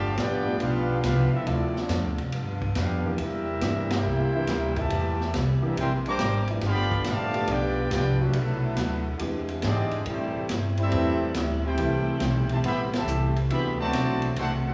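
Big band swing with a brassy, swinging mood, this short excerpt is cut from a longer piece and moves in a lively 4/4 with a strong swing feel. A trumpet section with a smooth top carries the melody, while a clear, tight trombone section with light vibrato plays a second line beneath it. Up front, a woody pizzicato upright bass anchors the harmony, and a vintage drum kit with dark cymbals, a punchy kick and a medium-tuned snare plays hi-hat, kick, ride and snare from 0.2 seconds onward. A concert grand piano with deep bass and audible action noise sits in the background, joined by a very quiet fingerpicked steel-string acoustic guitar and a bright, very quiet saxophone section holding soft-attacked sustained chords with vibrato. The band hits accents at 3.8 and 12.9 seconds over changes built on dominant sevenths such as G7, C7, E7alt and D7. A wet recital hall reverb lends the whole ensemble a roomy sheen.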